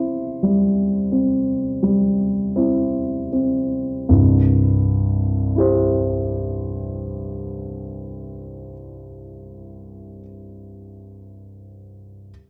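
Neoclassical minimalist piano in C major, tender and peaceful, drifting at a rubato 39-45 BPM in 4/4 and tuned to A4 = 444 Hz. A solo grand piano, dark, mellow and placed up front, spans C2 to C5 across this 12.3-second excerpt, easing its tempo over the first 4.1 seconds before a new section begins and runs to 10.1 seconds. A wet recital-hall reverb with a 1.5-second decay surrounds the piano, giving the production a warm glow.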